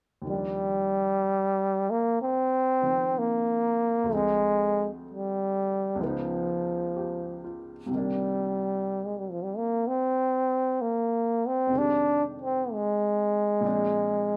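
A light reverb gives this short cut from a longer piece a soft sense of space, with a close-miked trombone sitting up front over a quieter baby grand piano. It is a romantic, tender jazz ballad in Eb major at a slow 63 BPM in 4/4, with a gentle swing on the eighth notes and tuning set slightly low at A4 = 436 Hz. The piano enters at 0.2 seconds as accompaniment, its intimate, natural tone marked by short sustain and audible action noise. The trombone carries the melody from 0.3 seconds, playing solo in a jazz style with a warm sound, soft attack, vibrato and scooped notes. Both continue to 14.4 seconds over a progression that moves from Ebmaj9 through Dm7b5, Db9, Cm9 and Fm9 to a closing Bb7.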